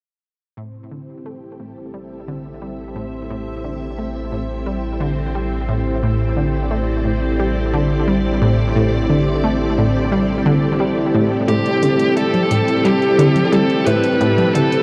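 Ambient, sequencer-driven space music, mysterious and expansive, cut from a longer piece and bathed in a huge reverb with the warbling pitch drift of worn cassette tape. From 0.6 s a lush, vintage string machine fades in on sustained chords with ensemble chorus, alongside a bright, detuned analog pluck riff through chorus and delay and a deep, round analog bass that stops at 11.4 s. At 1.3 s a bubbling, resonant stepped-filter texture joins, tucked in the background. At 11.5 s a dark, distorted bluesy lead guitar takes the melody up front with delay, joined by a booming analog drum machine with metallic hi-hats and toms, overdriven and echoing through delay.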